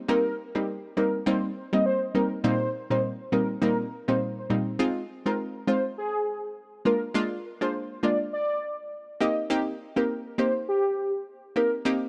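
A velvety, detuned synth lead carries the melody from 0.1 seconds, its smooth sustained tone colored by chorus, vibrato and a digital delay as it sings between G4 and Eb5. Beneath it, an analog pluck with a round, full-bodied sawtooth sound, a noise layer and a filter sweep supplies the accompaniment, its fast attack and short decay sitting up front alongside its own chorus. This is a romantic, breezy afrobeats piece at 102 BPM in 4/4, with a 58% swing on the sixteenths and a home key of Eb major. The harmony moves from Cm7 to Eb6/Bb, then opens into a second section at 4.8 seconds that passes through Ab6 and Bb7 before settling back on Eb6/Bb. Light reverb gives the pair a gentle sense of space in this short excerpt cut from a longer piece, which runs to 12.1 seconds.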